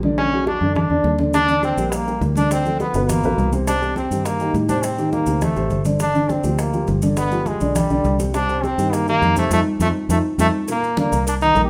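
A brisk 206 BPM salsa groove in Bb major carries this sunny, joyful excerpt, with a brilliant, punchy trombone out front over a dark, boxy grand piano, a round, foam-muted fingered electric bass, bright background congas, very quiet tight bongos and cowbell, grainy maracas entering at 1.3 seconds, and a band accent with a drum fill landing just before the resolution to Bb at 10.7 seconds, all set in a moderate large-studio reverb.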